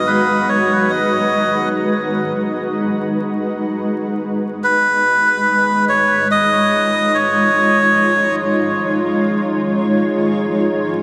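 Deep and meditative, this ambient dub fragment drifts on a blurred, detuned granular cloud pad holding G#m7 and then C#add9/G# chords, while a reedy, breathy melodica, close-miked and fed through dub echo, carries the melody until 8.4 s, the mix sitting in a huge, wet reverberant space under a veil of vinyl crackle.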